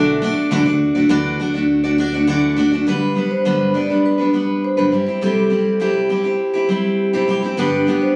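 Caught on a phone in a room with club reverb and compression, this heartfelt, carefree acoustic pop passage in G major at 102 BPM sets a bright, up-front picked steel-string guitar with audible finger squeak alongside a ringing, metallic vibraphone melody with plate reverb, while a soft felt-muted upright piano sounds only in the first 0.5 seconds and a woody pizzicato upright bass drops out at 2.8 seconds as the chords move from Dadd9 to G, C and back to G.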